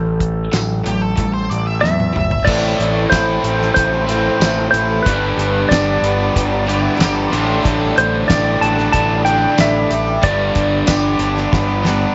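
Heard through a moderate echo chamber with the top end rolled off above 7.8 kHz, this swaggering, driving classic rock excerpt moves at 93 BPM in A minor. A clean, twangy lap steel carries the slide melody with slapback echo. Beneath it, a bright distorted electric guitar, a raw overdriven garage guitar and a growling, punchy fingered bass drive the riff from the start. The damped 70s kit sits up front with a fat snare, tight kick, hi-hat, crash, toms and tambourine, and a fill at 1.8 seconds leads into a new passage at 2.5 seconds that moves through Am, G and Dsus4/A. There, a double-tracked, compressed overdriven guitar thickens the riff, while a very quiet tonewheel organ holds lightly overdriven chords through a slow rotary speaker with key click and a shimmering, octave-doubled twelve-string acoustic adds accompaniment. A dark octave-fuzz lead guitar contributes a brief second line in two short bursts.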